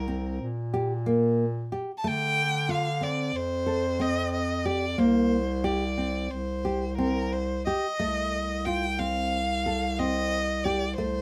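Contemporary chamber music in a restless, urgent 9/8 at 182 BPM counted in eighths, this short excerpt from a longer piece pairs a rich, expressive bowed violin melody, sung with vibrato, portamento and a soft attack, with a mellow, up-front bass clarinet carrying the bass line. A fingerpicked nylon-string guitar with a woody, full-bodied, slightly aged tone spins arpeggios between them, moving through Gm/Bb, Dm7, F5 and C5 before a rootless G9sus4/C colors the closing passage from 8.0 seconds. A moderate studio ambience frames the trio.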